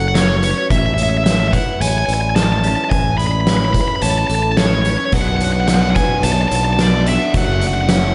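A straight 4/4 groove from an oversized, low-tuned drum kit with a fat snare and punchy kick drives this cinematic, hopeful post-rock fragment, where an overdriven cranked stack guitar sings the melody up front with slapback echo over a growling, overdriven fingered bass, a hard-mallet vibraphone ringing with fast motor vibrato, faint clean arpeggios from a hollow-bodied semi-hollow electric guitar and a very quiet, morphing wavetable pad with phaser, until a thick fuzz guitar riff joins in the background at 5.1 s, all inside a lush hall for a big arena sound.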